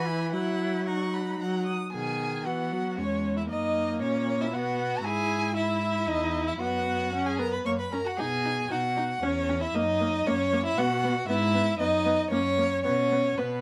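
A light reverb surrounds this spirited, graceful passage, cut from a longer piece: a quick classical-period movement for string quartet in a flowing triple metre with a straight feel. The first violin carries the melody up front, its rich tone marked by vibrato, portamento and an expressive, somewhat distant quality, climbing as high as D#6. Beneath it, the second violin spins a smooth, even second line with its own vibrato, while the viola supplies steady accompaniment with a mellow, rounded top. The cello anchors the bass with a soft attack, touches of portamento and expressive vibrato, reaching down to E2. After a brief opening phrase, the music settles at 1.9 seconds into a longer section that circles twice through a progression of tonic, supertonic, subdominant and dominant harmonies before closing on a suspended chord at 12.8 seconds.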